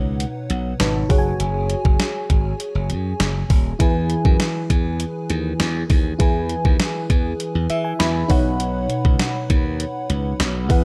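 1980s-style pop with an uplifting, nostalgic mood, cut from a longer piece, where a lush, dreamy FM electric piano with a soft pad layer and chorus plays alongside a bright, growly glassy slap bass from the start, a clean 12-bit digital drum machine enters at 0.2 seconds with a thumpy kick, medium-tuned snare, overdrive and gated reverb, and the electric piano adds a fill at 7.4 seconds over a dry, up-front mix.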